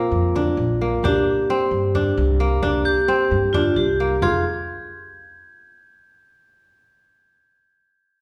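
Heard in the wet reverb of a recital hall, this pensive, urgent contemporary chamber piece in F dorian moves in 7/8 at 263 BPM in eighths, with a crisp, up-front fingerpicked kora playing arpeggios over woody pizzicato upright bass, a bright, airy vibraphone struck with hard mallets and its motor off carrying a second line, and a close, dry frame drum set in the background; these parts stop at 4.4 s, while a sparkling, bell-like glockenspiel played with brass mallets rings on alone until 5.8 s.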